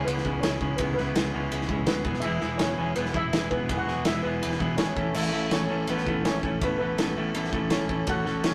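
A mellow, shimmering steel pan carries the melody from the very start, played softly with rubber sticks, while a distant trumpet sings a second line beneath it with vibrato and scooped notes. This wistful yet carefree indie rock fragment moves at a brisk 165 BPM in a straight 4/4, set in A major and cut from a longer piece. A biting overdriven guitar and a twangy, compressed clean electric guitar in the background both play picked riffs. A growling fingered bass with its own overdrive sits underneath. A loose acoustic drum kit joins at 0.1 seconds, up front with a tight kick, a medium-tuned snare and crash and ride cymbals in a small, pumping room. The harmony moves from C#m7 to Eadd9 at 2.1 seconds and settles on A at 5.0 seconds, all within a rough rehearsal-room sound with tube saturation and a wet studio reverb.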